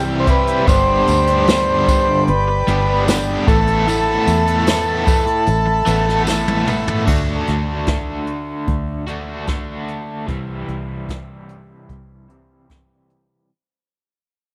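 Brushed drums set a straight, unhurried 75 BPM pulse in 4/4 from 0.3 s, with a boomy kick, dark cymbals and a jingly tambourine tucked in the background, while a round, foam-muted fingered bass anchors this mysterious, trippy psychedelic rock excerpt over chords moving through C, G and Asus2. A vintage overdriven combo organ with light vibrato and slapback echo carries the melody above reedy, breathing harmonium chords, as a bright, crunchy double-tracked guitar riff sits up front with tremolo. After a drum fill, the organ and harmonium have dropped away and the passage fades from 7.1 s over D and C as a filter sweep works on the guitar, all inside a light reverb.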